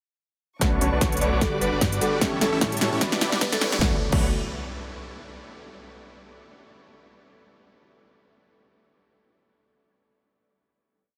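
A huge, detuned supersaw riff pulses through this short, emotional and lush future bass piece in B minor at 150 BPM with a half-time feel, driven by an overdriven dance kit of punchy snare, crisp hats and crash over a layered electronic kick and a saturated sub bass, while glassy chorused keys, a very quiet arpeggiated unison pluck, veiled muted strings and a buzzing, woody marimba melody entering at 1.2 seconds fill the build before a riser and impact arrive at 2.7 seconds and carry into the final Bm9 chord at 3.8 seconds.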